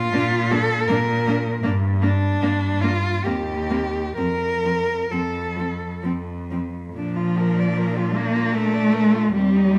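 This excerpt of lyrical classical music for cello ensemble is tender and warm, moving in a flexible, rubato 3/4 at roughly 62-82 BPM in Bb major. Four bowed cellos, each a single player with vibrato, share the texture. The melody cello sings up front with a focused tone, while the accompaniment cello sits in the middle register with a smooth top and similar presence. Beneath them, the bass cello holds a close, even foundation, and a softer second line sits higher with a gentle attack, expressive portamento and a rich voice. The harmony moves from Bb through Gm, Cm7/Eb and F before settling back on Bb as a new section begins at 7.0 seconds, all bathed in the lingering reverb of a recital hall.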